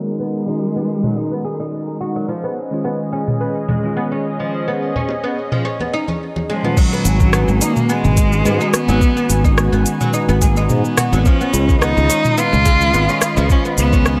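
The sound is lightly reverberant with a soft digital ambience and a gently filtered top end, framing an earthy, warm downtempo groove in four with a slight sixteenth-note swing, cut from a longer piece. A bell-like tine electric piano and a smooth, detuned sawtooth pad with chorus hold the harmony throughout, both pumping against the sidechain as the chords move between G#m7 and C#9. A woody, plectrum-plucked oud with doubled strings runs arpeggios through a delay, its low-pass filter sweeping across the first half. Up front, a rich, nasal bowed cello sings the melody with vibrato, portamento and a boxy, expressive tone touched by tape echo; it states a brief phrase at the start and returns at 6.5 seconds. A crisp-hatted electronic kit with rim clicks, shaker, toms and crash enters soon after the opening, compressed, saturated bongos and congas join at 2.8 seconds to color the rest of the first section, and the second section brings a soft, tape-warm kick at 6.8 seconds. 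A growly, bright fretless electric bass with analog chorus and sidechain pumping arrives at 7.0 seconds to anchor the low end.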